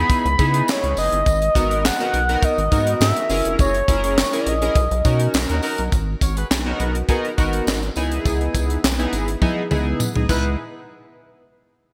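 A bright 1980s-style digital production with a moderate plate reverb frames this danceable boogie funk excerpt at 103 BPM in C# dorian, its tight, dry drum kit up front with high-tuned snare, handclaps and toms under a gated reverb, beside a jingly tambourine in the background and a rubbery, hollow square-wave bass with a resonant filter pluck. A smooth, expressive synth lead with vibrato and chorus carries the melody over a chorused retro polysynth until 5.3 s, moving through C#m7, G#m7, F#7 and Bmaj7 with a band accent. From 5.5 s a mellow horn section takes a second line over G#m7 and C#m7, and a drum fill closes the passage from 9.4 s.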